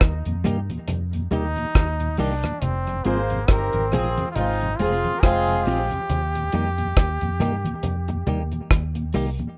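Hypnotic and serious, this slow roots reggae fragment at 69 BPM sways over Eb and Fm, with a brilliant, forceful trombone carrying the melody through dub echo, a dark, foam-muted fingered bass and a dry, up-front drum kit with a tight kick, hi-hat and rim click, a clean compressed electric guitar, a mellow tonewheel organ with slow rotary and analog delay sitting in the background beside thin-skinned congas, and a distant horn section adding a second line from 3.0 to 5.9 seconds, all in a rough home demo mix with light reverb.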